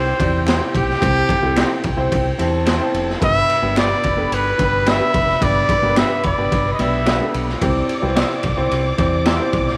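A clear, up-front trumpet with softly scooped notes carries the melody of this joyful, danceable 1960s-style soul fragment until 7.3 s, shadowed by a very quiet, sparkling glockenspiel and veiled, muted strings, over a tube-saturated grand piano, a round, dark fingered electric bass, a gritty garage drum kit with a punchy kick and high-tuned snare, faint, slightly broken-up guitar stabs and distant finger snaps, with light room reverb and vinyl crackle across the mix.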